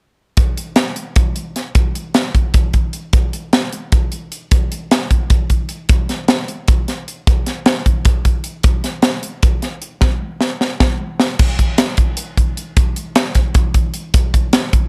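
Wistful and restless, this rock excerpt is a solo drum passage in 7/8, moving at a brisk 305 BPM counted in eighths with a straight feel. A crisp fusion drum kit carries it alone from 0.4 to 14.8 seconds, sitting up front with a punchy kick, a high-tuned snare, hi-hat and crash cymbal. The kit sounds acoustic and polished, captured in an airy studio room. A drum fill from 10.0 to 11.4 seconds marks the turn into a new section that runs to the end of this cut from a longer piece. Light reverb and a dark, warm production shape the whole.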